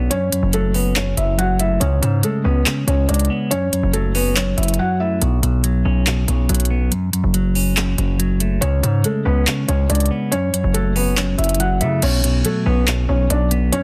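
A dense, heavily limited modern master set in a digital ambience gives this short slice of a longer trap piece a hard-hitting, eerie character, moving in a half-time feel. A distorted 808-style bass dominates the low end with a heavy, saturated sine tone, a noise layer and a fast attack that decays, sitting up front and aggressive. A trap drum kit with crisp hats, handclaps and crash cymbal drives the track with an electronic, produced punch, dropping out briefly around 4.8 seconds. Over this, a felt-muted upright piano carries the melody in a soft, mellow and intimate voice, its audible action noise lending a natural closeness, and it falls silent between 5.2 and 8.6 seconds. A clean, fingered electric guitar supplies compressed, low-pass-filtered accompaniment through minor-seventh and suspended harmonies, closing on a Bmadd9 chord as a new section begins at 12.0 seconds.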